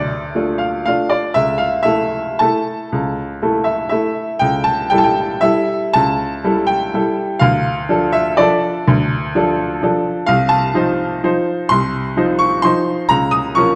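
A bright, woody upright piano plays alone and up front in this wistful, nostalgic classical waltz excerpt, its short-sustained notes spanning C2 to Eb6 in a rubato 3/4 that moves from Dm through A/C# and A7/C# back to Dm before turning to F7/C and Bbm/Db at 13.1 seconds, all set in a moderate scoring-stage reverb within a dark production.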